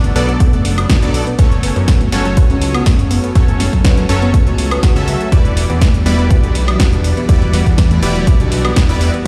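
This progressive house excerpt moves at 122 BPM in a straight 4/4, with a bittersweet, emotional mood carried over Bm7, F#m and Em7 chords. An overdriven electronic kick sits up front with a deep, roomy weight, while an overdriven deep house kit adds hi-hat, woodblock and a punchy snare. A fat, saturated analog bass mixes sawtooth and square tones, and punchy, detuned supersaw stabs with a filter sweep and delay pump against the kick alongside it. A soft, round pluck enters at 0.2 seconds with dark, wave-folded arpeggios, treated with subtle chorus and delay. Behind them, an evolving wavetable pad sustains bright, morphing chords through a phaser and its own reverb, and the whole track sounds as if played over a big sound system in a bare stone room.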